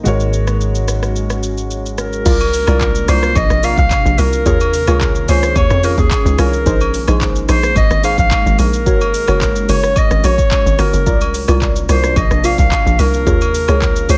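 In a digital ambience, this deep, soulful amapiano excerpt in C phrygian at 109 BPM opens with a smooth vintage grand piano and a round, hollow-body electric bass over a moody, detuned pad with chorus and reverb and an electronic drum kit with a deep kick and metallic hats; a distant, roomy clarinet enters at 2.0 seconds with a delayed melody, and at 2.3 seconds the drop brings in a punchy FM log drum bass and soft evolving chord stabs with chorus and delay over rich sus chords, with background agogo bells joining at 2.4 seconds.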